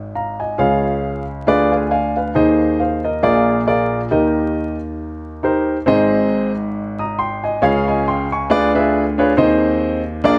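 A vinyl crackle and a moderate spring reverb surround a solo grand piano, heard up front with an intimate, natural tone and audible action noise. The short, jubilant gospel fragment of a longer piece swings at 137 BPM in 4/4 in Ab major, spanning the low bass to the high treble, with a fill at 1.5 s over a progression moving from Ab5 through Db, Ddim7 and Ab/Eb to Bb7 and Eb. At 5.9 s an uplifting second passage returns to Ab and revisits Db, Ddim7 and Ab/Eb.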